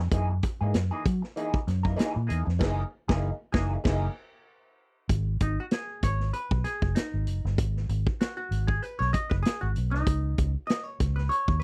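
A dry, close recording in a 1970s studio style carries this sly, funky excerpt, with a swung sixteenth-note feel and a vintage drum kit of punchy kick, medium-tuned snare, hi-hat, and dark crash cymbals set up front. A round, foam-muted fingered electric bass sits forward beside the drums, while a clean, picked hollow-body jazz guitar with wah plays accompaniment over an F#13 chord. The band hits accents from 2.6 seconds into a break at 4.5 seconds, and at 5.1 seconds the hollow-body guitar takes a solo over G#m7, moving to C#sus2 at 10.1 seconds.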